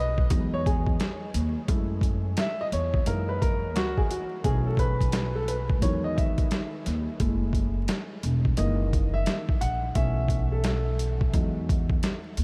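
A dark, mellow grand piano sits up front in this cool, smoky jazz-hop excerpt, taking a smooth, vintage-toned solo over a looping Emaj9, F#m9, F#13 and B7sus4 progression in F# dorian. Beneath it, a woody pizzicato upright bass holds the low end while a compressed, pitched-down boom bap kit enters at 0.2 seconds with a thumpy kick, a medium-tuned snare and hi-hat, gritty and tape-toned at a relaxed 87 BPM with a swung sixteenth feel. Light reverb, a small-room ambience and vinyl crackle give the hip hop groove a lived-in haze.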